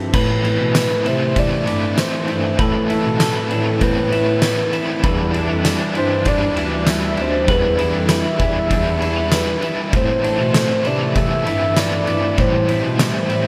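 A warm, detuned sawtooth pad, a clean, picked semi-hollow guitar arpeggiating through subtle chorus and delay, and a warm bass clarinet carrying the low line open this haunting, ethereal dream pop excerpt in A minor at 98 BPM. An overdriven hollow-body guitar shimmers with tremolo and lush chorus, and an oversized, low-tuned kit sits up front from 0.1 s, with a fat snare, punchy kick, dark cymbals and tambourine thrown into gated reverb. From 0.2 s a round, octave-layered synth lead sings the melody with vibrato, phaser and delay over Amadd9 and Em7, all framed by a plate reverb and bright 1980s-style digital production.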